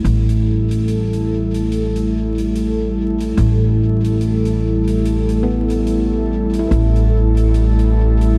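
A breathy, detuned pad with chorus and a ringing handpan both sound from the start of this deep, meditative ambient dub passage at 72 BPM in 4/4, the pad holding an A5 chord while the handpan plays arpeggios in the background through a low-pass filter and diffuse ambient delay, both parts shaped by filter sweeps. A woody pizzicato upright bass with tube saturation sits up front on a low A, and a faint acoustic hi-hat with dub echo enters at 0.1 seconds, lightly swung on the 16ths. Light reverb, a small-room ambience and vinyl crackle frame this short section cut from a longer piece.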